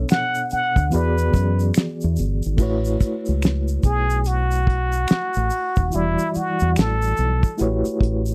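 R&B and neo-soul in a relaxed, swung groove, cut from a longer piece, where a reedy electric piano with fast tremolo lays down jazzy ninth chords over a round, punchy fingered bass and a damped 70s drum kit with a fat snare, tight kick and dark, rolled-off cymbals, all under faint finger snaps and egg shaker. A breathy trumpet with plunger mute carries the melody with wah-wah colour, scooped notes and light vibrato, stepping into a jazz-style solo from 2.6 seconds. The sound is dry and close, with a warm 1970s studio intimacy that keeps drums, bass and trumpet up front.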